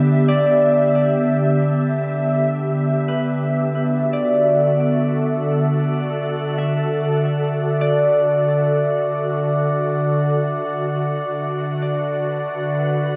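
Serene, weightless ambient music in free time opens with an ethereal, airy pad holding sustained chords up front, its detuned, slow-attack tone thickened by ensemble chorus and its own reverb. A Celtic harp plays fingerpicked, ringing arpeggios in a narrow upper register, its acoustic tone trailed by dub echo. Behind them a glassy texture of drifting overtones sits low in the mix, calm and sine-like, softened by chorus and reverb. The harmony moves from Em7/D to Dadd9 at 3.6 seconds, where the glass texture fades in and the harp fades out over the remaining time to 13.2 seconds. A wet spring reverb and echo-heavy mix give the whole a suspended, floating quality, and the recording is cut from a longer piece.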